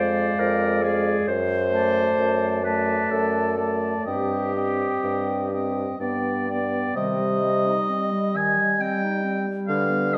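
All five winds of a quintet sound together from the first moment in this slow, romantic classical movement in C minor. It moves in a rubato three-four at around 60-70 BPM, and the mood is melancholic and yearning. A hollow, pure silver flute carries the tongued melody with vibrato. A warm, up-front oboe sings a second line above a clear, soft-edged clarinet and a French horn with light vibrato. The smooth, mellow bassoon anchors the bass. The harmony moves from a diminished chord through a dominant seventh toward Cm/G and G, and it settles on C minor as a second section opens at 7.0 s. A wet recital hall reverb surrounds the ensemble in this short passage cut from a longer piece.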